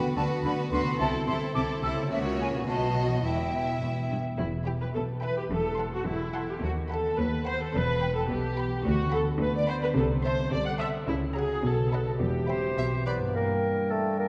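This excerpt from a whimsical, playful film cue in E minor opens with a rich, focused violin section carrying the melody at 107 BPM in 2/4, backed by an intense second violin line, a smooth viola section up front, a ringing thumb-plucked harp in the background, and bowed cellos and expressive double basses with soft attacks and portamento beneath. An airy, crisp silver flute adds a second line in the opening seconds and returns at 13.4 seconds, while a distant oboe, a mellow bassoon and a dark clarinet join near the close as the harmony turns to Gm. The mood is mischievous and magical, set in a wet concert hall with a dark production.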